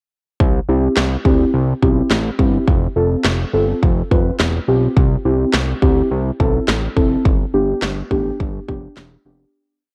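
A fat, saturated analog bass pulsing in eighth notes and a punchy house drum kit with a cracking snare enter together at 0.4 seconds, driving a wistful yet bright synth-pop piece at 105 BPM in C major. Muted, felt-like synth keys with a chorus effect join at 0.7 seconds, placing dark, soft triad chords on the off-beats over a progression of C6, F, C6 and G. The whole track sits in a moderate plate reverb with the worn, warbling pitch drift of old cassette tape, and it fades out from 7.3 seconds to its end at 9.5 seconds.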